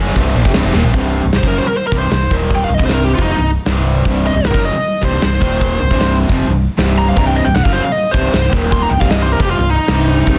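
Driving and menacing, this hard rock excerpt in C minor at 154 BPM pairs a cranked, double-tracked stack guitar riff, up front and picked with overdrive, with a dark, round, punchy hollow-body short-scale bass and a huge arena drum kit with a punchy kick and medium-tuned snare, which plays a fill at 0.7 s before a bright, biting lead guitar enters its solo at 1.4 s with overdrive and slapback echo, all set in a small room with light reverb and a dense, heavily limited modern master.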